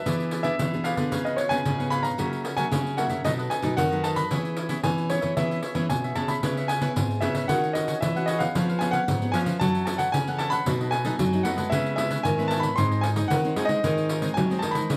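A polished, up-front grand piano carries the melody through this joyful, lively excerpt of samba and choro in a straight 4/4 feel, with the second section arriving at 6.4 s. Around it, a crisp, picked cavaquinho and a fingerpicked classical nylon-string guitar with fresh strings supply the accompaniment, while a second nylon-string guitar plays the bass line. A jingly pandeiro, played with soft hands and given a compressed, saturated edge, drives the rhythm, and a moderate large studio reverb surrounds the ensemble.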